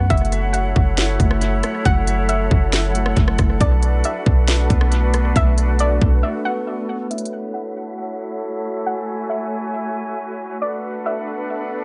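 A deep, boomy 808 bass anchors this melancholic, ethereal fragment of atmospheric cloud-rap in F# minor at 137 BPM with a half-time feel, sitting up front with a trap kit of hard-clipped kick, sharp snare, crisp hats and rim clicks while a soft, round pluck carries the melody through chorus and analog delay over a large flute ensemble whose airy, vibrato-laden chords pump against a sidechain, a dark, fingered electric guitar arpeggiating in the background, and a breathy, wind-like tuned noise texture drifting beneath, until the bass drops out at 6.2 seconds, the guitar at 7.1 seconds and the drums at 7.3 seconds, leaving the flutes, pluck and texture under a filter sweep across F#m7 and Bm7 in an echo-heavy, dry mix with a muted top end.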